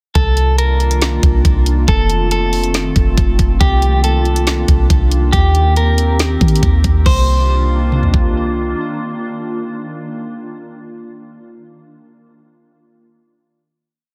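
A sparse half-time beat at 139 BPM in 4/4 opens the piece, with a knocking kick, woody snare and fast hi-hat rolls on an up-front smooth R&B drum kit, while a deep, round 808-style bass holds long sub-bass notes that follow the kick, all in C dorian over a Cm11, F7 and Eb6 progression. This atmospheric cloud-rap track feels ethereal and spacious, as a clean electric guitar repeats a sparse looping melody like a sampled loop through spring reverb and delay, and a glassy FM pad sustains mellow chords with ensemble chorus and sidechain pumping. The drums stop at 8.2 seconds and the guitar at 8.3, while the bass carries on until 8.7 and the pad rings out on the final Cm11 until 10.3 seconds in a dense, heavily limited modern master.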